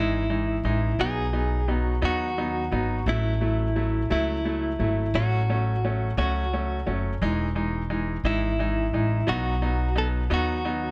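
A light studio reverb surrounds this heartfelt, romantic six-eight pop ballad, cut from a longer piece. A direct-recorded clean electric guitar carries the melody with a picked, compressed tone and a tremolo shimmer, while a brilliant, present grand piano supplies short-sustained accompaniment up front. Beneath them, a woody, growly upright bass played pizzicato adds a thumpy pulse as the chords move from Emaj7 through B, F#m7/A and A6, back to Emaj7 and on to B.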